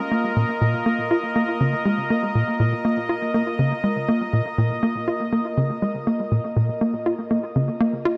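A moderate plate reverb gives this short excerpt of ambient, sequencer-driven space music a spacious, hypnotic and expansive air. A sweeping, resonant sawtooth pad holds evolving chords up front, bright and chorused with a shimmer reverb, a slow attack and a long release. From 0.1 s a tight, punchy sequencer bass drives a dark riff with a fast-attack filter pluck that decays, colored by subtle chorus, analog delay and shimmer reverb.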